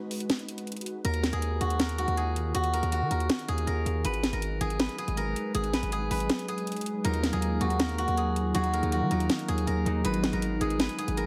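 A silvery steel-string zither, played with fingerpicks, carries a melancholic melody up front in this hard-hitting, half-time trap excerpt. It arrives at 1.0 s alongside a punchy, heavy 808-style bass, over sharp snare and metallic hi-hats, while an ethereal FM pad with ensemble chorus and reverb holds mellow chords in the background. A ringing concert harp joins as accompaniment at 7.0 s, all under a light reverb and a heavily compressed, radio-like sound.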